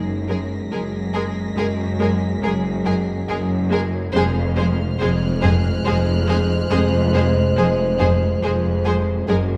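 A wet concert-hall reverb surrounds this brief cinematic passage in three, lending its eerie, tense mood a cavernous depth. Distant, dark French horns hold sustained chords while bowed cello and double bass sections anchor the low end with a rich, lush bass, and a very quiet, expressive cello section plays an undercurrent riff. Set in the background, a symphonic violin section carries a smooth melody with vibrato, shadowed by a studio violin section on a second line and a viola section whose intense accompaniment sits beneath. High above, another violin section spins a focused, smooth-topped texture, and a mellow thumb-plucked concert harp rings faintly until 3.3 seconds, returning at 8.0 seconds. The harmony moves from Gbadd9 to Fm at 4.1 seconds, deepening the unsettled atmosphere of this fragment of a longer piece.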